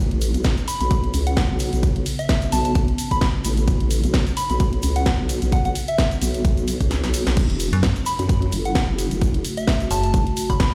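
Swaggering and bouncy, this swung bass house excerpt rides a punchy, up-front electronic kick and a garage drum kit with a cracking snare, hi-hat, ride and crash cymbal, while a close, grainy egg shaker sits in the background, a nasal, saturated vowel-sweep wobble bass pulses with sidechain pumping, a soft FM synth bell melody trails digital delay, and a detuned sawtooth pad evolves behind them; the kick drops out for a drum fill at 6.9 seconds before a metallic FM bass joins at 7.7 seconds, just after the harmony turns minor, the mix played on a big sound system in a bare stone room.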